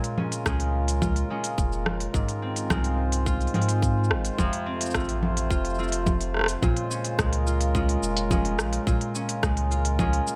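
A straight 4/4 groove comes from an up-front organic electronic kit of cabasa, congas, smooth hi-hat and rim click, joined at 0.5 s by a tight electronic kick drum and a deep, round sine sub bass. This short folktronica passage, cut from a longer piece, feels autumnal and delicate. A fingerpicked concert harp plays ringing arpeggios up front, its acoustic tone roughened by vintage 12-bit sampler grit and delay. Alongside it a mellow accordion holds reedy sustained chords, close-miked and dry, with a full single-reed body. The harmony moves from Bbm7 through Ab6 to F before returning to Bbm7 at 6.6 s, where a new section begins, and light reverb softens the mix.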